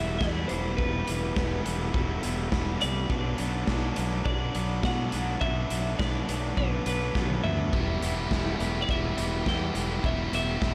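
A moody, bittersweet indie rock excerpt at 104 BPM in E minor opens with a twangy, clean twelve-string electric guitar melody ringing through analog delay over a distorted, up-front fuzz guitar riff and a punchy, overdriven fingered bass, joined at 0.2 seconds by a raw garage drum kit with a punchy kick and rolled-off top in a bright stone room, and after a drum fill a biting overdriven guitar riff enters at 7.7 seconds with lush chorus and delay as the chords move from Em to Bm and back in a dry, echo-heavy mix.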